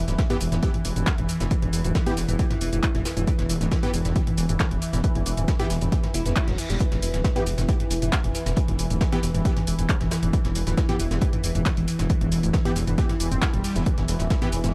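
Driving peak-time techno with a dark mood, built on an up-front electronic kick drum and a thick, menacing detuned saw bass that pumps with sidechain, while a gritty, screaming overdriven synth lead riff with phaser, chorus and delay plays alongside an analog drum machine's handclaps, hi-hat, shaker and toms, a muffled lo-fi brush kit and detuned supersaw stabs in the background, and a very quiet reverse cymbal at 6.2 seconds, all in a dry, dark production.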